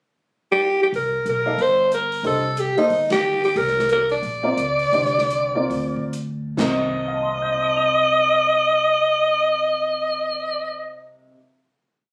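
Captured on a phone in the room, this short, complete modal jazz piece has a studio ambience and light reverb, with a hypnotic, intense mood in C dorian and a swung 4/4 that moves between 127 and 184 BPM. A growling alto saxophone leads from 0.5 seconds, up front and bright, with a raspy, gritty edge, scooped notes, vibrato and a smooth top, shaping a motif-based melody in period phrases. Underneath, the upright bass plays a woody, thumpy two-feel, while the upright piano adds boxy syncopated comping in quartal voicings over Cm9 and Bb. The acoustic drum kit, dark and smooth in a small room, keeps time with sticks on the hi-hat, pairing a boomy kick and a medium-tuned snare with dark cymbals. The band hits an accent at 3.1 seconds, the tempo then slows, and the piece settles onto a final Cm9 chord at 6.6 seconds.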